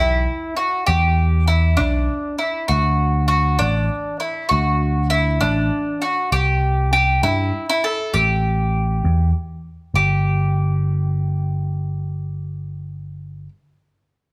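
Nostalgic and uplifting, this short cut of indie folk with a building arrangement moves at 66 BPM in a straight 6/8, tuned to A4 = 436 Hz, with a bright, woody, double-strung picked acoustic mandolin carrying the melody up front over a growly, round and punchy amped electric bass, both playing live together in one room under a wet large-studio reverb, as the harmony passes through Em, D, C5 and A5 before the chords fall away at 9.9 seconds.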